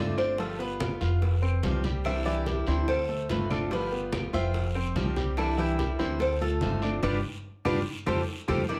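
A mellow, metallic Cuban tres carries the melody in this sunny, relaxed Latin son and guajira passage, its doubled strings ringing over a woody, up-front pizzicato upright bass, a boxy old ladder-braced acoustic guitar and clear, polished piano arpeggios. Woody claves, a raspy guiro, tight high-tuned bongos with cowbell and thick-skinned low congas fill in the percussion, while a bright, fingerpicked nylon-string guitar slips in with a second line at 2.1 s. The band lands an accent from 7.0 s, the whole group heard from further back in a wet studio reverb.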